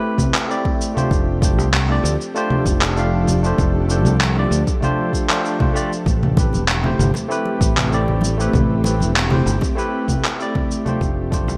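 A straight 4/4 groove at 97 BPM drives this smooth, relaxed sunset chillout excerpt in A minor. It is built on a deep, overdriven electronic kick and up-front, gritty sampled congas, cabasa and handclaps with gated reverb, while soft-handed acoustic congas ring in the background from 6.4 s. A barky tine electric piano with delay moves between Am9 and F69 over an ethereal, detuned pad with ensemble chorus, and a growly, punchy fingered electric bass enters at 1.1 s, all in a bright 1980s-style digital production with light reverb before a fade-out beginning at 9.4 s.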